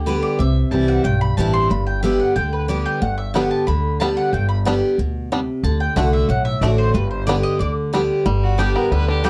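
Heard through a worn, warbling old cassette tape with light reverb and a warbly drift in pitch, this lively, driving bluegrass fragment in G major moves at 183 BPM in a straight 4/4, cut from a longer piece. Up front, a bright, full-bodied dreadnought steel-string guitar picks the accompaniment while a woody, thumpy upright bass with gut strings plucks the low end, and a double-strung mandolin adds picked stabs in what is marked as its solo stretch. At 3.4 seconds a twangy, percussive banjo played with fingerpicks takes up the melody. The harmony moves from C to G, then to D and back to G. Near the close, a single clear, intense fiddle with light vibrato enters at 8.4 seconds with a bowed second line, as the solo passes to it for the final moment.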